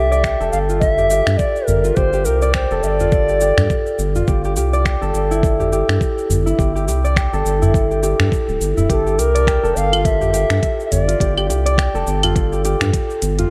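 Hypnotic and warm, this organic downtempo excerpt swings gently as a ringing, fingerpicked concert harp spins delayed arpeggios up front and a round, deep analog bass pumps beneath, while an airy, reedy bass bansuri with digital delay carries the melody, falling silent at 4.0 seconds and returning at 8.9 seconds, over a gritty, thumpy sampler-style kick, a smooth-hatted electronic kit of cabasa, claves and finger snaps, and a small udu in the background, the whole mix set in light studio reverb.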